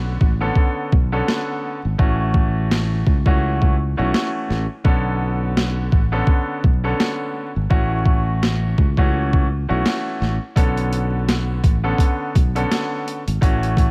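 Vinyl crackle and a small-room ambience frame this short, moody excerpt of boom-bap hip-hop, cut from a longer piece and carried by a swung sixteenth-note feel. A bright concert grand piano plays the accompaniment throughout, its brilliant tone and deep low end filtered and coloured by cassette tape as it moves between Bm9 and F#m7/A. Underneath, a sustaining fretless electric bass sits up front with a growly, direct-and-amped sound. From 0.2 seconds, a sampler-style kit of hi-hat, thumpy kick and medium-tuned snare comes in gritty, compressed and overdriven, the loudest instrument in the mix. The passage is marked as a break until 10.6 seconds, when the harmony returns to Bm9 and keeps the dark, dusty atmosphere to the end.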